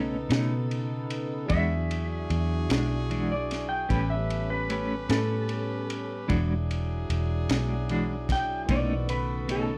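Slow, swaggering, laid-back 12/8 blues at 50 BPM in E mixolydian, cut from a longer piece, where a dark, clean lap steel plays a slide second line over a twangy electric guitar with tremolo, a mellow organ with light overdrive and a slow rotary speaker, smooth jazz-style horn chords, an up-front, round foam-muted bass, and a gritty, lo-fi breakbeat kit entering at 0.3 s, all moving through B9, E9 and A9 in a dry, close 1970s-style studio sound.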